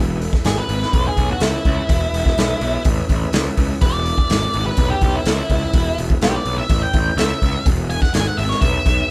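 A dark octave-fuzz lead guitar solos up front from 0.5 seconds through this swaggering, driving 125 BPM blues rock and southern rock cut from a longer piece in E mixolydian, pushed along by a growly, bright picked electric bass, a gritty garage drum kit with a boomy kick and pumping small-room sound, and a very quiet, overdriven tonewheel organ holding sustained chords with key click and fast rotary speaker, the band playing live in one room with light reverb.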